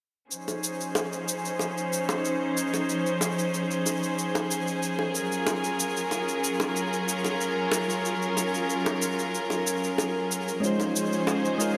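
Dark, intimate chamber strings hold Dbmaj9 and Gbmaj9 chords up front from 0.3 s in this relaxed sunset chillout excerpt at 93 BPM in Db major, with tight, high-tuned bongos in the background, an electronic, tape-warm shaker, and round, mellow electric-piano-like synth keys with chorus, phaser and delay entering at 10.6 s, set in a lush hall reverb with bright 1980s-style digital production.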